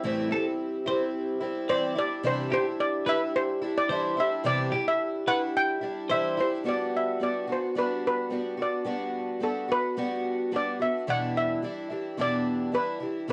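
A metallic steel pan carries the melody up front in this easy-going, heartfelt pop excerpt in G major at 109 BPM, with chords moving from Am7 and Cadd9 to Gmaj7 and Em7. Beneath it, a fingerpicked parlour twelve-string acoustic guitar gives octave-doubled accompaniment with audible finger squeak, while a twangy, compressed twelve-string electric guitar plays clean arpeggios from 0.3 to 6.5 seconds. Both guitars carry a cassette tape character, and the whole home recording sits in a small room's moderate ambience.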